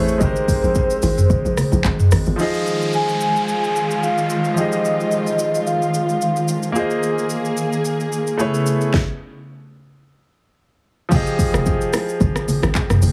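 A round, detuned octave-layered synth lead with chorus, phaser and delay floats over brilliant grand piano, punchy log drum bass, an up-front electronic drum kit with deep kick and sharp snare, background congas and bongos, and a brief downlifter, while bowed strings with vibrato and sidechain pumping enter at 2.4 seconds in this hypnotic, late-night amapiano excerpt, heavily compressed like radio in a small room with light reverb, with a stop at 8.9 seconds before the drop returns at 11.1 seconds.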